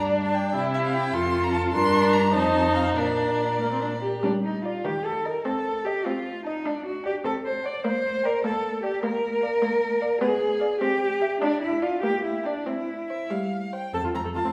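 A 6/8 pulse, stretched with rubato, carries this graceful, spirited classical-period movement for string quartet, cut from a longer piece. The first violin sings the melody with rich, expressive vibrato, soft attacks and portamento, while the second violin traces a warm, smooth-topped line beneath it until 13.9 s. The clear, focused viola supplies the accompaniment and the smooth, even cello carries the bass, both sounding distant yet up front, all wrapped in the wet reverb of a recital hall.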